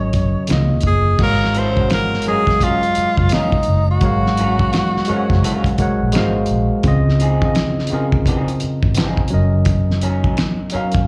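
R&B with a neo-soul lean, this warm, soulful fragment of a longer piece sits at 85 BPM in 4/4 with a swung sixteenth-note feel, and it sounds like a live club gig heard through the venue's PA, with small-room ambience and club reverb. A breathy, clear tenor saxophone carries the melody up front with pop-style vibrato and slapback and tape echo, then drops out at 6.0 seconds. Beneath it, a worn, slightly out-of-tune tine electric piano played through a combo amp moves through lush chords from Db69 to Ab13sus4, Ab13, Dbmaj9 and Gb6. The electric piano shares the slapback echo with a compressed, slightly broken-up picked electric guitar that enters at 1.6 seconds as a quieter second line through a small old amp. Anchoring the groove is a dark, round, foam-muted fingered electric bass with a punchy, amped tone, sitting a touch above the rest in level. A cloth-damped drum kit adds a muffled, gritty lo-fi character, with a fat snare, tight kick, hi-hat, crash cymbal and finger snaps, its rolled-off top keeping the sound intimate.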